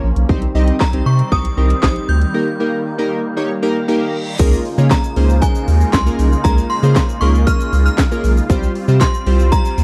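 A dry, close 1970s-style studio sound frames this bittersweet, driving dance-pop excerpt, where a round, deep analog bass and a punchy, overdriven house kit with cracking snare, handclaps, hi-hat and crash sit up front, with the bass, glossy chorused retro synth keys and a detuned supersaw swell all pumping to the sidechain. From 0.8 s an inharmonic FM synth chime rings out the melody through ensemble chorus, tremolo and tape echo, while a break brings a synth keys fill and an electronic reverse cymbal leading into the next section at 4.4 s. There a grainy tube shaker joins in the background as the chords move from minor to a Db6 and then a Csus4.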